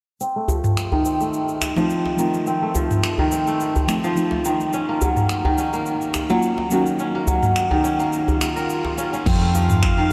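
Drenched in a huge, dreamy reverb, this short cut from an earthy, mystical organic downtempo piece moves at 106 BPM in F phrygian dominant with a light sixteenth-note swing. Bright, ringing kora arpeggios sit up front under a filter sweep, while an overdriven afro-pop kit of cabasa, crash, finger snaps and toms plays alongside an acoustic djembe, and from 1.8 s a soft, warbling chord stab with chorus and sidechain pumping sits in the background as the harmony moves from F7 to Ebm7 and back. A background electronic swell arrives at 8.4 s, and at 9.3 s a woody, punchy fretless bass and a deep overdriven electronic kick enter, joined by a glassy, drifting harmonics texture.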